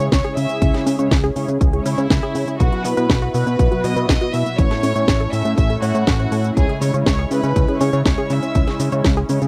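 A dry, close 1970s-style studio sound frames this melodramatic, danceable italo disco fragment in C# minor at 121 BPM, where a punchy electronic kick and a house kit with cracking snare, metallic hats and cabasa play alongside a fat, saturated analog bass, while detuned synth brass stabs with chorus and phaser, a very quiet unison pluck arpeggiates, a smooth pad holds sustained chords in the background, and an intimate chamber violin section carries the tape-echoed melody over C#m, Bsus4 and A.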